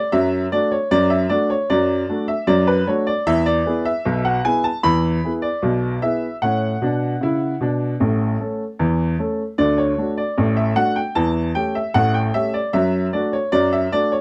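A clear, woody upright piano plays solo ragtime in a straight 2/4 feel, its cheerful, lively strain sitting up front and open in a dry, closely miked sound, reaching from A1 up to B5 across this 14.2-second cut from a longer piece.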